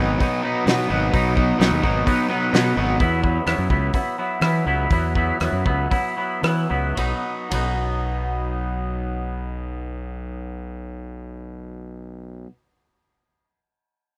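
A bright, overdriven guitar riff, picked and up front with lush chorus and tape echo, opens this wistful, jangly indie rock excerpt in B major, alongside a clean, twangy guitar riff and a round, fuzz-laden fingered bass. A loose acoustic kit joins almost at once, its fat snare, tight kick, dark cymbals, hi-hat, ride and rim clicks sitting mid-forward in a small room. The crunchy guitar drops out at 3.0 seconds as the harmony moves from B to Esus2, and the tempo, somewhere between 109 and 129 BPM in a straight 4/4, slows over the following bars. The drums fall away at 7.7 seconds, just after the chords return to B, leaving the compressed, chorus-soaked twangy guitar and the overdriven bass to carry on until the clip ends. The whole thing has the rough, small-room feel of a home demo.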